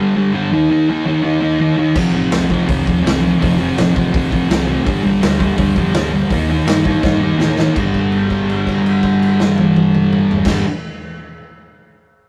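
Garage rock at 166 BPM in G minor, gritty and raw, opens with a thick, double-tracked fuzz guitar riff up front, joined at 2.0 seconds by a dark, round hollow-body bass in the background and a punchy, saturated drum kit in a bright stone room, whose fill at 7.0 seconds leads into a held note from 7.8 seconds, all captured as a rough rehearsal-room recording with tube saturation and a small-room reverb in this cut from a longer piece.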